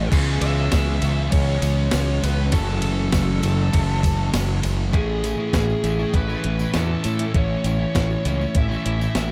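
A straight 4/4 pulse at 100 BPM comes from a crisp 8-bit digital drum machine, sampler-style with a thumpy kick, medium-tuned snare, hi-hat, ride and crash, sitting up front with a tape-warm, small-room character, while a jingly tambourine shimmers in the background. This short cut from a longer piece of shoegaze and dream pop rock in A major feels wistful and blissful, moving through C#m7 and F#m7 before settling on Amaj7 at 4.9 seconds. A growling fingered electric bass, bright, punchy and overdriven, anchors the low end up front. Behind it, layered guitar riffs build a hazy wall: a thick fuzz guitar treated with distortion and analog chorus, a clean picked electric guitar, compressed and washed in reverse reverb, and a double-tracked crunchy overdriven guitar that drops out at 4.9 seconds. Over the top, a dark, biting lead guitar with overdrive and digital delay carries the melody between G#4 and E5, and the whole mix stays dry and close.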